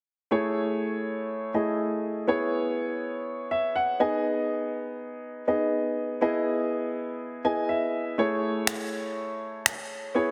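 Set in a moderate, lush hall reverb and pressed into a dense, heavily limited modern master, this confident, driving dance-pop excerpt centers on a clear, up-front baby grand piano with long sustain, which voices chords moving from Amaj7 through C#m7, G#m and Emaj7, adds fills at 3.3 and 7.2 seconds, and is joined by layered, tape-warm electronic finger snaps with a softly clipped edge from 8.7 to 9.8 seconds.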